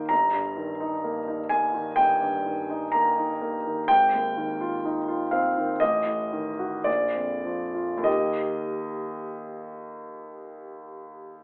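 Serene and dreamy, this short passage from a romantic classical nocturne drifts in Eb major at a slow, rubato 47-66 BPM in 4/4. A solo concert grand piano carries the whole piece, sounding intimate and natural with deep bass, long sustain and audible action noise, as it moves from Eb/G through Fm7/Ab, Ebdim/A and Bb before settling on Eb at 8.1 seconds. The recording places the listener further back in a large studio with moderate reverb, and the overall sound has a thin, telephone-like character.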